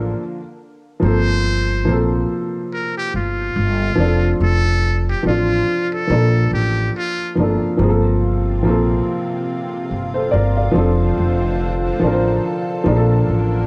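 A buzzy, breathy trumpet with a metal mute carries a light-vibrato jazz melody from 1.1 to 7.3 seconds in this nostalgic, melancholic lo-fi hip hop piece, over a boxy, felt-muted upright piano with audible action noise and a woody, growly pizzicato upright bass, while a lush, detuned sawtooth pad with chorus returns at 7.8 seconds, all on worn, warbling old tape after a brief stop.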